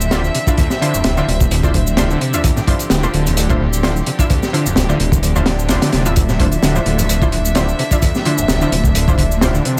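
Up-front, gritty production sets this raw, swaggering breakbeat cut from a longer piece, its crunchy acoustic drum kit landing with a punchy kick, a high-tuned snare and hi-hat, all saturated and rolled off at the top, over a gently swung groove. A deep, rumbling detuned saw bass holds the low end with a beating, sustained tone, while an overdriven acid bass riff squelches with resonant filter sweeps, distortion, lush chorus and dub echo further back in the mix. Bold, punchy orchestra-hit-like synth stabs cut through with bright, ring-modulated, detuned layers, built-in reverb and dub echo. Behind them, a rich chamber string section sustains a Dm9 chord with light vibrato and an earthy, distant bowed tone, pumping under sidechain, and a tape-warm layered shaker ticks along quietly. The kick drops out between 5.2 and 6.2 seconds as a faint electronic swell appears, and thin-skinned, high-tuned congas enter very quietly from a large, distant room at 6.3 seconds.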